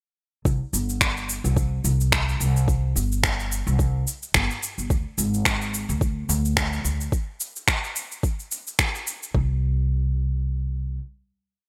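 Earthy and mystical, this short, complete organic downtempo piece moves at 108 BPM in 4/4 with lightly swung sixteenths, built on a woody, growly pizzicato upright bass riff that is syncopated, up front and pumping from sidechaining, over a soft, overdriven electronic kick and a layered beat of overdriven shaker and finger snaps with gated reverb and a large-room sound, all framed by light reverb and bright 1980s-style digital production until the drums drop out and the bass carries the final note alone from 9.5 seconds.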